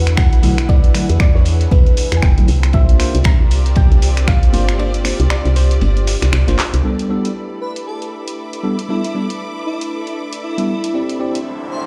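A swung 117 BPM deep house groove in A minor, built on an up-front punchy electronic kick that drops out at 4.4 seconds, an analog drum machine of finger snaps, handclaps and hi-hat, and a muffled, cloth-damped kit with ride and fat snare, sets a late-night, hypnotic mood as a woody FM bass, a smooth warbling analog pad and lush bowed strings pump beneath bell-like tine electric piano stabs coloured by 12-bit sampler grit and dub echo, while a soft round pluck gives way to an airy, dreamy lead at 7.6 seconds and a riser rises at 11.1 seconds, all played through a big sound system in a bare room with large studio reverb.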